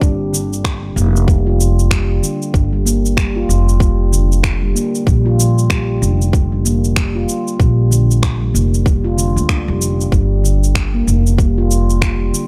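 A dry, gritty hardware recording with little reverb carries this mystical organic downtempo piece in G minor at 95 BPM, swung on the 16ths and resting on a single Gm7 chord, cut from a longer performance. Up front, a mellow stainless-steel handpan played with soft fingertips rings out meditative arpeggios through a low-pass filter and analog delay in a boxy small room, while an equally forward, woody pizzicato upright bass thumps beneath it with sidechain pumping. A tight, tape-warm electronic kick drum anchors the groove, joined by a quieter layer of electronic cabasa and finger snaps, both re-recorded in a large room.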